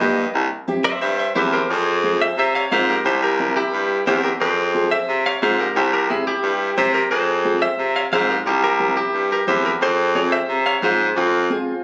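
A punchy, forceful baritone saxophone sits up front carrying the bass line with vintage vibrato in this fiery, driving cumbia passage at 177 BPM in F harmonic minor, cut from a longer piece. A twangy, scooped clean electric guitar, recorded direct with spring reverb and slapback echo, takes the melody and a solo spot over the opening 1.7 seconds, while a full-bodied nylon-string guitar fingerpicks the accompaniment with audible finger squeak. The harmony rocks between Fm and C7, and the phone-in-the-room capture adds club reverb and compression.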